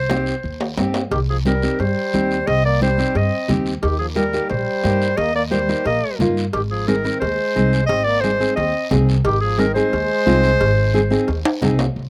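The sound is dry and open-air, with little reverb and the feel of being played outdoors, so each part comes through plainly. This is a driving, fiery cumbia at 177 BPM in a straight 4/4, cut from a longer piece and moving through C minor, E-flat and A-flat. A bright clarinet carries the melody up front in a classical style, while a woody, thumpy upright bass, plucked pizzicato, also sits up front. A fingerpicked nylon-string guitar with fresh strings gives classical-style accompaniment, and a mellow trombone enters at 1.1 seconds as a second line, with light vibrato, scooped notes and a slapback echo. The percussion blends soft-handed congas with a thick-skinned tone set back in the mix, ringing metal-shell timbales and cowbell heard close, and a quieter raspy guiro touched with slapback echo. A drum fill opens the recording and another arrives near 11.5 seconds.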